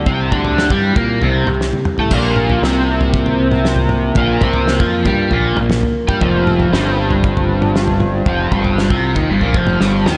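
A raw, double-tracked garage guitar sits up front with an overdriven, flanged riff, while a fuzzed fingered electric bass growls beneath it and a glass harmonica floats ethereal, slow-blooming chords behind, in this hypnotic, hazy psychedelic rock excerpt at 117 BPM. A cloth-damped, thuddy drum kit with a fat snare and dark cymbals enters at 0.1 seconds, with fills at 1.6 and 9.8 seconds, as the harmony moves from C to Bb5 and F5. The dreamy mix is soaked in lush hall reverb with a rolled-off, muffled top.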